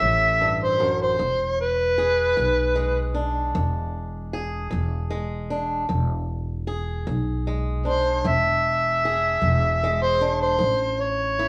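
A slow 12/8 pulse drives this soulful, swaggering acoustic country blues passage, cut from a longer piece and moving from A7 to a long stretch of E7 before landing on A near 10.6 seconds. An amplified, overdriven harmonica solos up front for the full 11.5 seconds, its gritty tone full of vibrato, tongue slaps, scooped notes and jazz-style phrasing over a soft attack. Beneath it, a fingerpicked swing-style acoustic guitar adds boxy accompaniment, and a pizzicato upright bass with steel strings sits woody and forward, the trio playing live together in a stone room with moderate reverb.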